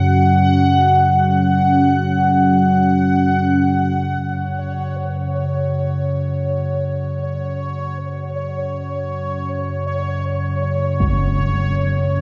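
A deep, rumbling drone sits up front in this cavernous, desolate dark ambient piece, its ominous low tones colored by a phaser as it holds in free time alongside a moody, detuned pad of sustained chords softened by chorus. In the upper register, a bubbling, resonant texture of random filter steps adds a glinting edge, and a huge, bright impact strikes at 11.0 seconds. The whole fragment, cut from a longer work, hangs in a vast, echoing space with a long reverb tail and a dark top end.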